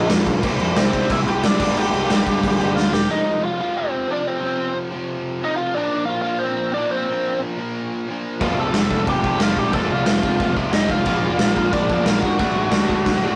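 A straight 4/4 punk rock pulse at 180 BPM drives this angry, urgent excerpt from a longer piece, carried by a raw garage drum kit that sits up front with a punchy kick, medium-tuned snare and dark cymbals in a bright stone room, its gritty, saturated sound rolled off at the top. A biting lead guitar, overdriven and up front, carries the melody between C4 and A5 throughout, while three rhythm guitars play riffs underneath: a very quiet cranked stack guitar, a sludgy, dark distorted guitar that is also very quiet, and a double-tracked, hollow-bodied semi-hollow guitar in the background. The growling picked bass, overdriven and punchy, holds the low end from E1 to A2 alongside the drums and the semi-hollow guitar, and all three drop out after about 3 seconds, leaving the lead and the two other guitars alone until 8.4 seconds. A drum fill at 2.8 seconds marks the move into the second section, which shifts from C and Gm to a progression around F and Bb before closing on D at 12.4 seconds. 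The whole recording has the rough feel of a rehearsal room, with light reverb and a warm saturation.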